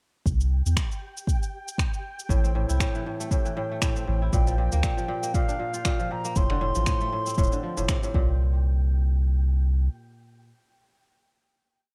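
Delicate and pastoral, this short folktronica piece moves at 118 BPM with a light swing, built on a deep, round sub bass playing a dub-style line, a soft, up-front electronic kick, and a clicking found-sound beat of shaker and finger snaps, all under a flickering, grainy high note held in its own reverb. At 2.3 seconds a crisp, ringing fingerpicked kora enters with a 12-step arpeggiated loop that drifts against the bar, and at 4.3 seconds an airy, bright baroque flute adds call phrases, both trailed by digital delay. The groove ends in a final hit at 8.4 seconds, with the kora ringing on past it.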